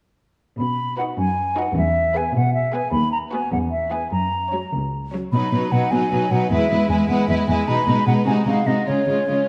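A 6/8 pulse at 102 BPM with a rubato feel drives this quick, cheerful and graceful classical-period movement for symphony orchestra in B major, a short cut from a longer piece that moves through chords such as E, F#, G#m and G#7 before reaching C#. A dark, up-front cello section lays down the bass alongside a pure, hollow concert flute carrying a second line from 0.6 seconds, and at 1.0 seconds the strings join: a lush violin melody set in the background, a smooth, close second violin line, and a focused, distant viola accompaniment, all with vibrato. A moderate scoring-stage reverb surrounds the dark production.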